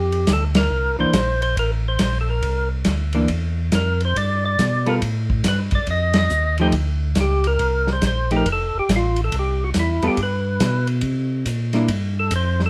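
Soul jazz organ trio swinging at 139 BPM in C mixolydian, with a bluesy mood in this short cut from a longer piece. A percussive tonewheel organ carries the melody through a slow rotary speaker, its fat tone lightly overdriven with a third-harmonic click, while a second tonewheel organ plays the bass line, mellow, round and clean with chorus vibrato and the same slow rotary. A dry, muffled soul drum kit with dark cymbals, a tight kick and a medium-tuned snare sits up front with a lo-fi, rolled-off top, and a dark, clean hollow-body electric guitar, picked, comps from 1.0 s to 11.9 s. The band hits accents together at 0.5 and 6.1 seconds as the chords move from Fadd9 and C9 through Gadd9 and F7sus2 to a C5, F, C, G turnaround. At 11.0 seconds the music shifts to a new section over C7(no3), where the tonewheel organ takes a brief solo, all set in light reverb.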